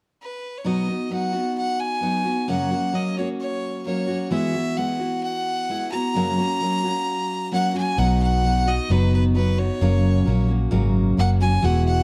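A dark production in a roomy studio reverb frames this down-home, heartfelt honky-tonk and classic country passage, where a clear, biting fiddle with light vibrato carries the melody over a full-bodied picked dreadnought acoustic guitar, and a round, foam-muted vintage electric bass joins them up front at 8.0 s.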